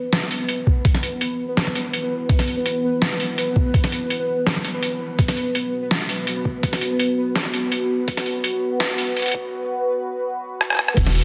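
This short cut from a longer half-time drum and bass piece opens in a spacious, cinematic hall, its dense, heavily limited master trimmed of low rumble by a high-pass filter. At 166 BPM in a half-time feel, a dark analog pad holds moody, detuned sawtooth chords with a sub octave and chorus, pumping against the sidechain while a filter sweep carries it through the build-up that spans to 11.0 seconds. Alongside it, a pulsing gated texture of tempo-synced, unison triangle tones adds chorus and its own reverb over a long release. Up front, a gritty, pitched-down boom bap drum kit brings crash, hi-hat, rim click and a medium-tuned snare with soft clipping, while a thumpy, tape-warm electronic kick enters at 0.7 seconds and a drum fill arrives at 10.6 seconds. The harmony moves from E5 to B5 at 5.2 seconds, and a thick, saturated sub bass lands on a deep E1 at 11.0 seconds as the excerpt closes.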